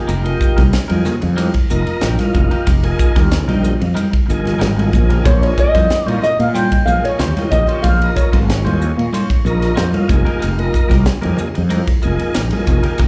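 A growly, up-front fretless bass drives this slick, intense electric jazz fusion excerpt at 93 BPM, joined by a punchy, high-tuned fusion drum kit, a smooth tonewheel organ with key click and slow rotary speaker, twangy compressed stabs from a clean electric guitar, and ringing congas set back in a large room, while a dark, fingerpicked nylon-string guitar carries the melody with a hollow, airy flute as a second line from 5.3 to 10.1 seconds over a move from Fm11 to Bbm9, the performance captured live through a club PA with light reverb and a dulled top end.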